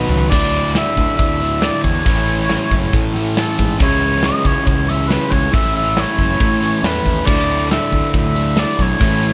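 Swaggering and driving, this classic rock excerpt runs at 138 BPM in a straight 4/4, with a quick drum fill in its opening moments from a big, airy, polished kit with bright cymbals, a punchy kick and tambourine sitting up front. A bright, overdriven electric guitar and a sludgy distorted guitar tucked in the background pick out riffs over a growly, fuzz-laden fingered bass, moving through Dsus2, A and C#m. Above them a distant, roomy oboe sings the melody in a classical style with vibrato, all under light reverb and tuned to A4 = 437 Hz.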